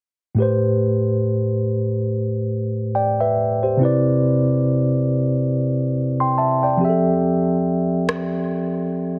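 A mellow, clean tine electric piano sits up front from 0.3 s, sounding as if played through its own built-in speakers, as it moves through Am7, Cmaj7 and Fmaj7 in this sensual, late-night contemporary R&B fragment at 70 BPM in A minor with a lightly swung 16th-note feel, before a faint, softly clipped electronic rim click joins it at 8.1 s, the whole set in light reverb under a dense, heavily limited modern master.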